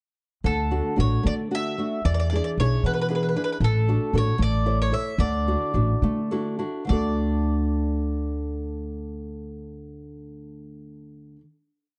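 A bright, picked mandolin carries the tune of this short Italian folk serenade, playing double strings in a motif-based melody shaped as sentence-like phrases. Beneath it, a warm nylon-string guitar fingerpicks a classical oompah accompaniment of bass notes and chord figures, close and up front, with the odd finger squeak. The upright bass, also up front and the loudest part, plucks thumpy, woody root-and-fifth notes on the main beats in a steady 6/8. The mood is romantic yet lively. The pace slows from 3.6 seconds, and the guitar slips in a fill at 6.0 seconds before the ensemble settles on a final chord at 6.9 seconds. Light reverb and a dark, warm production round out this complete little piece.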